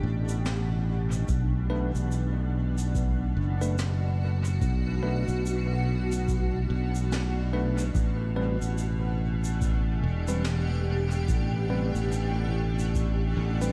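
Spacious and deep, this ambient dub excerpt moves at 72 BPM in 4/4 with a 16th-note swing, tuned slightly sharp to A4 = 443 Hz. A cloudy, evolving granular pad holds sustained chords throughout, its slow attack and long release blurring them into a full-bodied haze with built-in reverb and analog chorus. Beneath it, a growly fingered electric bass sits bright and up front in its low register, while a dry, deep electronic kick drum arrives at 1.3 seconds. A distant, roomy shaker and brushed snare carry dub echo, and from 1.7 seconds a bell-like tine electric piano adds clean stabs that also trail off in dub echo. The harmony drifts from A7sus2 to Bm7, then returns to A7sus2 at 8.0 seconds, all set in a light reverb.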